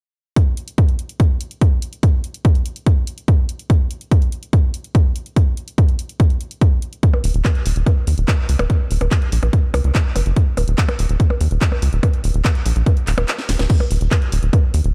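A heavy, layered electronic kick drum sits up front in this psychedelic trance excerpt, driving a straight pulse from 0.4 seconds alongside a techno drum kit with a cracking snare, handclaps, hi-hat, crash cymbal and percussion blips, both re-recorded in a large room. At 7.2 seconds a tight, punchy sequencer bass enters, its sawtooth and square-wave tones shaped by a mellow filter pluck with a fast attack and decay. The mood is alien and psychedelic in a dark production with little reverb, and a short break at 13.3 seconds, with a drum fill from 13.4 seconds, leads into a new section.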